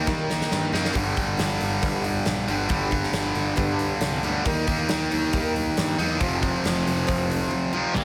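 Quiet-loud alternative rock in G minor, this short excerpt cut from a longer piece moves at 137 BPM in a straight 4/4 with a cathartic, angsty mood. A bright, overdriven electric guitar sits up front playing the riff, while a fuzz-drenched, punchy picked electric bass drives the low end beneath it. A full-bodied dreadnought acoustic guitar arpeggiates in the background through plate reverb, its picking carrying audible finger squeak. A huge arena drum kit enters at 0.1 s with a fill, its punchy kick, medium-tuned snare, hi-hat and bright crash cymbals ringing in a pumping hall. The harmony shifts from Eb to G5, back to Eb and then to F5, and at 7.9 s a crunchy, warm overdriven guitar with tremolo joins the riff up front just as the passage closes, all within a light reverb.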